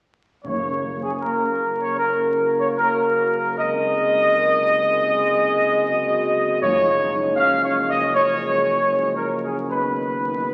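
A stately, straight 4/4 pulse at 78 BPM carries this triumphant, regal classical fanfare in F# major, cut from a longer piece. A mellow trumpet section with light vibrato and a soft attack sings the melody up front over a bass note from a dark tuba and background chords from a loose trombone section, while a distant, roomy French horn section joins at 2.0 s and timpani struck with hard mallets punctuate at 0.4 and 6.6 s. The harmony moves from F# through G#, C# and B over a held F# bass, all bathed in a wet concert hall reverb and the crackle of a very old 78 rpm record.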